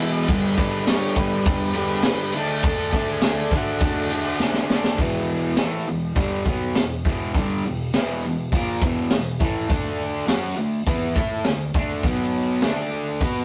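A buzzy, vintage combo organ carries the melody in the background as the piece opens, alongside a bright, double-tracked fuzz guitar riff and a raw garage drum kit playing hi-hat, kick, ride and snare at a straight 102 BPM in 4/4. A jingly, close tambourine joins low in the mix at 0.9 seconds, while the harmony moves from G to D. The organ stops at 4.4 seconds, and a drum fill leads into a new section at 5.0 seconds, where the chords shift through E5, D5, B5 and D5. Up front, the drums pair a boomy kick and high-tuned snare with dark cymbals, their gritty, saturated sound pumping with the small room and rolled off at the top. This raw, swaggering garage rock excerpt is cut from a longer piece and comes across as a rough rehearsal-room recording with a moderate short reverb.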